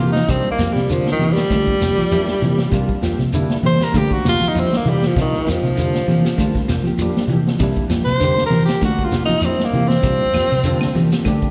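Heard as a live gig through the venue's PA with recital-hall reverb, this funky, joyful afrobeat excerpt moves at 98 BPM with a light sixteenth-note swing over a C7sus4 chord in C mixolydian. A clear, close-miked tenor saxophone solos up front with vibrato and slapback echo, backed by a round, foam-muted fingered bass and a vintage acoustic drum kit with a punchy kick and a rolled-off top. In the background, a hollow-body semi-hollow guitar picks arpeggios through harmonic tremolo, a dark, fingered electric guitar adds stabs with tremolo and echo, a barky, lightly overdriven tine electric piano accompanies, a grainy shekere shakes throughout, and woody claves join at 10.3 seconds.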